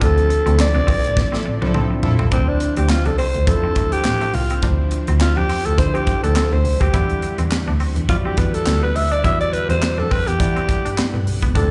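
Heard as a live club gig through the venue's PA, this cut from a longer piece carries a small-room ambience and club reverb, with a dulled top end that gives it a late-night, funky haze. It is early-eighties boogie funk in D dorian, moving at 104 BPM in 4/4 with a light swing on the sixteenths. Up front, a punchy acoustic drum kit with a high-tuned snare, handclaps, hi-hat and toms sits beside a clear, focused bowed double bass with vibrato. Behind them, a barky, overdriven tine electric piano through a combo amp plays accompaniment, a twangy, clean electric guitar picks a riff through lush chorus, and a swirling, phased string machine holds very quiet sustained chords. The opening band accent and drum fill bring a bold, detuned analog synth brass second line from 1.3 to 2.3 seconds, with ring modulation and a filter sweep. A breathy, raspy alto saxophone carries the melody from the start with vibrato and slapback and tape echo, and from 2.3 seconds it takes the solo, while the harmony moves from Dm9 to Em9 at 6.9 seconds.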